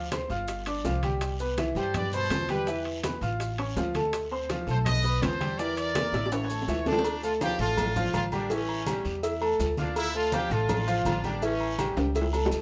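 A brilliant, woody upright piano and a dark, thumpy pizzicato upright bass open this fiery, passionate salsa excerpt at 165 BPM, joined almost at once by tight, high-tuned bongos and cowbell, low-tuned congas, raspy guiro and grainy maracas in the background, with ringing metal-shell timbales and agogo bells close by. From 1.8 seconds a bright, up-front trumpet section carries the melody with pop-style vibrato, and after a drum fill at 6.1 seconds the music settles into D harmonic minor at 7.0 seconds, moving between Dm and A7. A moderate studio reverb gives the whole ensemble a sense of space.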